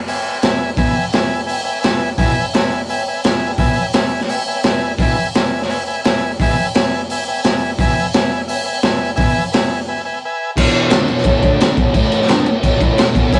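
Raw and rowdy, this garage rock excerpt from a longer piece is driven by a crunchy, up-front breakbeat drum kit with a high-tuned snare, tight kick and dark cymbals, while a dark, double-tracked fuzz guitar riff enters at 0.8 seconds. A buzzy vintage combo organ holds sustained chords with light vibrato, drops out at 10.5 seconds after a quick organ fill during a short break, and the music moves into a new section of power chords. Small-room reverb gives it the rough feel of a rehearsal-room recording.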